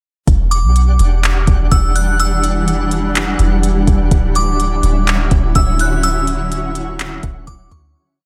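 Hazy and melancholic, this short atmospheric cloud-rap piece moves at 125 BPM in a half-time feel, resting on E dorian as the harmony shifts from Em9 to Dmaj9 at 4.1 seconds. A smooth R&B drum kit sits up front with a sparse half-time beat of soft kick, smooth hi-hats and handclaps, its tape-warm tone carrying the air of a large room. Beneath it, a soft 808-style bass plays long, round, sine-like sub-bass notes that follow the kick, deep and dark with pitch slides. A glassy synth bell enters at 0.5 seconds with a crystalline, sparse melody repeated like a sampled loop, colored by chorus and digital delay, while a twinkling granular texture adds faint sparkle through its reverb. From 1.2 seconds a shimmering, ethereal pad holds evolving detuned chords with an octave-up shimmer and sidechain pumping, and the whole piece fades out from 6.0 seconds.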